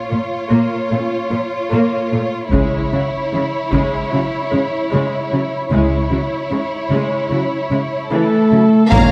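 Cinematic epic orchestral film score, relentless and dark, where lush bowed violins carry a distant, expressive melody over a second violin line, vibrato-laden violas, rich cellos and warm sustained French horn chords, while woody double basses and distant taiko drums join at 2.5 seconds, an airy flute drifts in at 8.1 seconds, and the piece is cut just as a very quiet close-miked trumpet stab, timpani, a faint bright trombone section and a very quiet rich string section arrive at 8.9 seconds, all within the dark production's scoring-stage reverb.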